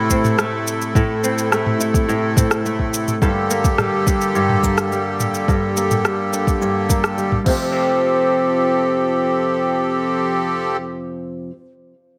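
A reedy, sweet accordion holds sustained chords alongside a dark, fingerpicked flamenco guitar from the opening moment of this delicate, pastoral folktronica fragment, cut from a longer piece. The guitar's arpeggios sit up front, roughened by vintage 12-bit sampler grit and shaped by a low-pass filter, a filter sweep and delay. The accordion's light tremolo tuning and boxy small-room character give it a homespun, close presence. A soft electronic kick and an up-front, produced electronic kit with crash cymbal, rim click, shaker and toms join almost at once, then drop out at 7.6 seconds. The harmony moves from Am to Gmadd9 and settles on Fadd9, leaving guitar and accordion alone until the accordion stops at 10.8 seconds. A moderate plate reverb lends the whole a digital ambience.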